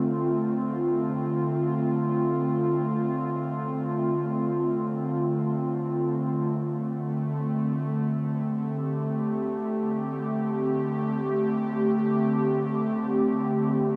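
Serene and spacious, this ambient fragment features a lone airy, breathy synth pad, soft and nasal with a detuned sawtooth edge and a noise layer, sitting up front through chorus and diffuse delay while it sustains from Dm7 to Am7/D at 6.5 seconds inside the long, wet reverb of a vast, echoing cathedral.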